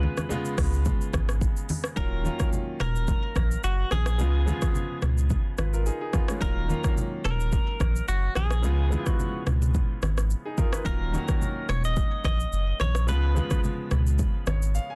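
A clean, twangy electric guitar melody with digital delay opens this smooth, hypnotic afrobeats excerpt alongside bright, polished grand piano accompaniment, a round sine sub bass and soft-handed, low-tuned congas in the background, while an up-front electronic drum kit with a deep kick, smooth hats, rim clicks, shaker and toms joins at 0.2 seconds over a dry, dense and heavily limited mix that rocks between Db7 and Ebm9 until a grand piano fill at 14.2 seconds.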